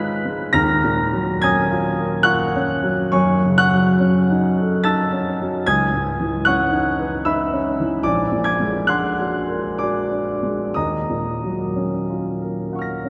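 A concert grand piano sits up front in a wet cathedral reverb with a 4.3-second decay, its warm, open tone and deep bass blooming into the long tail of the space. This is impressionist classical solo piano in Eb minor, in 3/4 with a rubato feel that drifts between 59 and 77 BPM, tuned to A4 = 438 Hz. The mood is hazy and mysterious. The piano plays alone, ranging from Bb1 up to Cb7, and the harmony moves through Abm6, Ebm9, Gbm6 and Dbm9 before a Bbaug7 at 8.0 seconds unsettles things and Ebm9 returns at 10.8 seconds. The passage is a 13.1-second cut from a longer piece.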